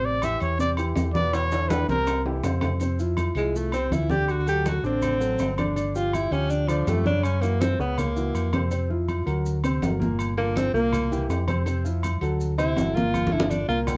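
A clear, breathy tenor saxophone carries most of this fragment of sophisticated, danceable Afro-Cuban jazz, taking its solo from 2.8 seconds, up front, with vibrato and scooped notes. Before it, a whispered trumpet with a soft attack and intimate vibrato opens with a brief solo that ends at 2.2 seconds. The tempo is a brisk 163 BPM in straight 4/4 in F major. A dark, round, punchy fingered electric bass sits beneath a natural-toned baby grand piano playing chords such as Gb7#11, Daug7 and D7b13. Low-tuned, thick-skinned congas and grainy, mellow maracas stay in the background, while ringing, compressed agogo bells and timbales add a saturated metal-shell edge, and drum fills appear near the start and close. A moderate club reverb surrounds the ensemble, and the recording carries the worn, warbling pitch drift of old cassette tape.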